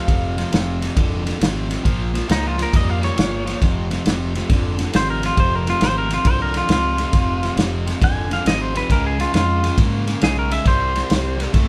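Electric blues shuffle with a soulful, smoky mood, heard as a short cut from a longer live-in-one-room performance with moderate studio ambience. A clean, compressed electric guitar takes an up-front picked solo bathed in spring reverb, while a bright, crunchy overdriven guitar plays a low riff. A round, punchy fingered bass and a soul drum kit with dark cymbals, a medium-tuned snare and a tight kick support the band as the harmony moves through F minor, B-flat minor, D-flat and C.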